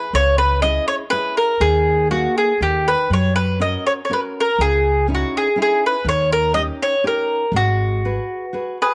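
This Italian folk serenade fragment is romantic and passionate, moving in a rubato 3/4 around 122 BPM. A picked mandolin carries the melody up front, its double strings giving a bright, woody ring. A fingerpicked classical nylon-string guitar sits lower in the mix with a full-bodied accompaniment. A pizzicato upright bass on steel strings adds a dark, thumpy foundation until 8.2 seconds. The harmony moves from C#m through D#sus4, D# and F# to C#madd9, D#7 and G#m7, and at 8.8 seconds a second mandolin, round and up front, sounds a single G#4. Light reverb and a small room ambience surround the players.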